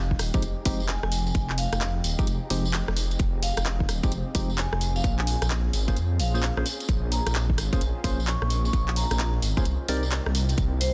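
Dry, dense and heavily limited, this soulful, moody two-step UK garage excerpt swings over Fm9, Bbm9 and Cm9 chords, with a rumbling detuned saw bass and a tight, tape-warm electronic kick up front, a garage kit of handclaps, hi-hat and rim click with a softly clipped snare, a jingly tambourine, hollow organ stabs trailing dub echo, a ringing vibraphone melody from 0.9 s, a silky string machine pumping in the background through phaser and ensemble chorus, and a faint, warbling tape-like pad entering at 6.2 s.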